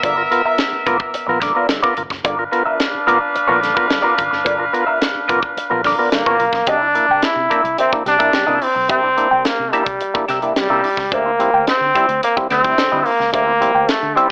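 A brilliant trombone with slapback echo takes the melody from 6.1 seconds in this playful funk excerpt, after a horn section opens over wah-touched clean guitar, overdriven tonewheel organ stabs, a dark foam-muted bass and a tight drum kit with a high-tuned snare, all framed by a large studio reverb and an AM radio sound.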